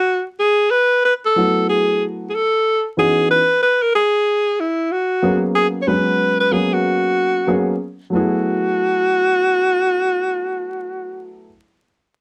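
A swung sixteenth-note feel at 93 BPM in 4/4 gives this hip hop fragment an unhurried, nocturnal sway, set in F# minor with a mellow mood throughout. A breathy alto saxophone opens at 0.0 seconds and carries the melody alone at first, its jazz-style subtone and gentle vibrato sitting up front in the mix. A dark concert grand piano joins at 1.4 seconds as accompaniment, offering deep bass and a smooth, vintage character with short sustain, also placed up front alongside the horn. The harmony drifts through rich minor eleventh chords, moving from F#m11 to C#m11 and G#m11 before a brief contrasting passage begins at 8.1 seconds and F#m11 returns. Moderate studio ambience and a layer of vinyl crackle wrap the two instruments in a late-night, lo-fi haze.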